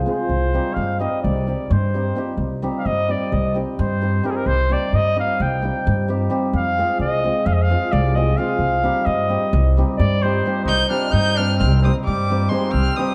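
Balkan wedding-band folk in a bittersweet, virtuosic mood, moving briskly at 260 BPM in 9/8 in C minor, with shimmering, ringing cimbalom chords and woody, growly pizzicato upright bass up front under a clear, vintage-toned trumpet that takes a classical-style solo until 10.7 seconds. The harmony moves from C minor to F minor and back, and at 10.7 seconds a single bowed violin, nasal and boxy with vibrato, enters high on the melody. A recital-hall reverb and a dark production color this short cut from a longer piece.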